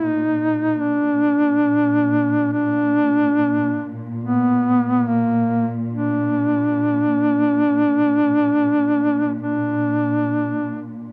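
A mellow duduk carries the melody up front as a solo voice, singing with folk-style vibrato and a smooth top in a narrow range from Bb3 to Eb4. Beneath it, a dark symphonic cello section holds a bowed drone on Bb2, set well back in the mix, its ensemble sound lush and expressive with its own vibrato. This Caucasian lament in Bb major moves in free time, and its mood is solemn and full of longing. Both parts sound together from the opening, with the duduk ending at 10.9 seconds and the cellos sustaining until 11.1 seconds in this short passage cut from a longer piece. Close, detailed microphones and light reverb give the recording an intimate presence, with the instruments tuned to A4 = 439 Hz.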